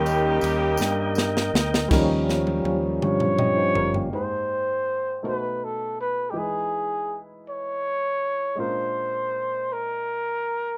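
This brief cut from a slow, reverent gospel piece in 6/8 at 54 BPM opens with a tight, mellow horn section carrying the melody in octave doubling. Beneath it sit a clear concert grand piano, an up-front tonewheel organ with key click and light overdrive through a fast rotary speaker, and a warm, direct fingered electric bass. A polished fusion drum kit with punchy kick and dark cymbals joins almost at once, along with a jingly, close tambourine. The drums add fills from 0.8 seconds, and the organ steps forward for a solo at 1.9 seconds. The horns and tambourine drop out at 1.5 seconds, and a jazz-style solo trumpet with light vibrato and scooped notes enters at 3.0 seconds, sounding distant and roomy under a plate reverb. At 4.1 seconds the organ, bass and drums stop, leaving the trumpet and the slightly worn, deep-toned piano over chords moving from Abmaj7 through B7 and Emaj7 to Bb7, an uplifting close heard in a small room within a rough home demo mix.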